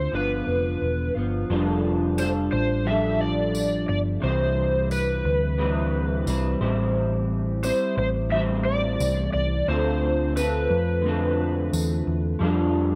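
Dreamy and sunny, this indie pop and bedroom pop excerpt moves at an easy 88 BPM in a straight 4/4, drifting through chords like F69, Cmaj7, Am7 and Dm7 under a light reverb. An overdriven slide guitar carries the melody up front with analog chorus and tape echo until 11.7 seconds, while a bright, twangy electric guitar through a small old amp picks slightly broken-up accompaniment with chorus and a warbly pitch drift. A round, dark hollow-body short-scale bass anchors the low end, and a jingly tambourine, distant as if in a large room, joins at 2.2 seconds.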